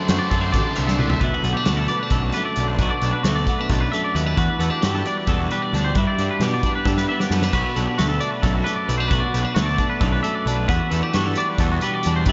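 Playful and bright, this brief math rock and midwest emo excerpt races along at 266 BPM in 7/8, with a chiming, up-front twelve-string electric guitar picking out accompaniment under a twangy, scooped electric guitar whose arpeggios shimmer through lush chorus and tape echo, a biting, double-tracked overdriven guitar riff that sits in the background and drops out at 1.2 seconds, a fuzz-soaked picked bass, and a loose indie drum kit with dark cymbals and a tight kick that throws in fills around 0.9 and 6.9 seconds, all washed in a dreamy, reverb-drenched mix as the chords move from D7 through Bm7, Em9 and G6.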